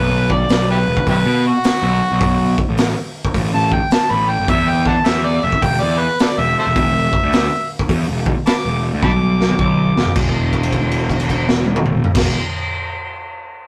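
Blues rock power trio with a southern rock edge, this brooding, gritty swing excerpt opens on an overdriven harmonica solo, amplified and up front with tongue slaps, over a growly, fuzz-drenched picked bass that stays present until 12.3 seconds. A raw garage drum kit enters at 0.3 seconds with a punchy kick, medium-tuned snare, hi-hat, crash and toms in a small, pumping room, its saturated top rolled off, and a drum fill arrives at 9.0 seconds. The harmonica stops at 10.1 seconds as a held note carries the rough rehearsal-room sound, with its tube saturation and light reverb, to the close.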